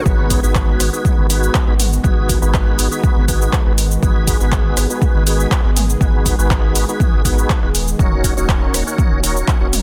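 Afro house at 121 BPM in G# minor, a hypnotic, spiritual passage cut from a longer piece that sits in a drop from the start, riding G#m7 before moving to D#m7 at 8.0 seconds. An overdriven electronic kick leads the mix over a layered deep house kit of handclaps, hi-hat, rim click, shaker and toms, while a round sine sub bass with tube saturation pumps underneath in the background. Stabs from a lightly overdriven tonewheel organ with chorus vibrato, slow rotary speaker and delay float above a smooth, detuned sawtooth pad with slow attack and long release, the whole set in digital ambience and a dense, heavily limited master.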